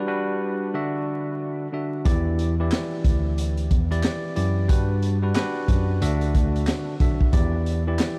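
A bright, bell-like tine electric piano opens this moody, tough boom-bap hip-hop excerpt alone, clean and up front with high-pass and low-pass filtering, moving through Gmaj7, Dadd9 and Em7 in E minor at 91 BPM with a swung 16th feel. At 2.1 seconds a crunchy breakbeat kit arrives with a punchy kick, high-tuned snare, hi-hat and handclaps, gritty and saturated with a rolled-off top. Alongside it, a worn, slightly out-of-tune second tine electric piano carries the bass line, lightly overdriven through a combo amp, all under vinyl crackle and light small-room reverb.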